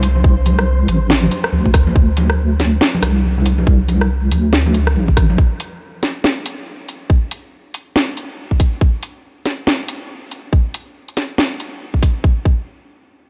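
Heavy and meditative, this deep dubstep fragment rides a half-time, swung groove where a tight electronic kick and a garage kit with a cracking snare and bright hats sit up front, a deep, square-and-sine wobble bass with chorus rumbles through the first 5.4 seconds alongside distant, ringing congas soaked in dub echo, and a flickering, granular texture hovers in the background only at the very start, all wrapped in a dark production with light digital ambience.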